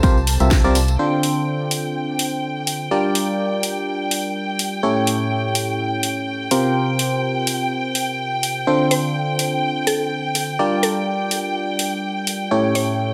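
This energetic, soulful piano house excerpt opens at 125 BPM in D minor with a biting, chorused FM electric piano riff up front, lush distant bowed strings holding sustained chords, and a cracking snare and hi-hat from a layered house kit, all moving through a C7sus4, Dm7, Gm7, A7 progression with a lightly swung sixteenth feel. A hollow, organ-like FM bass, a layered electronic kick and a background tambourine sound only at the very start, with the kick gone by 0.6 s, while sidechain pumping breathes through the strings, piano and bass. At 8.9 s a woody, round synth pluck with chorus and tape echo adds a melody in the background, all set in a moderate plate reverb.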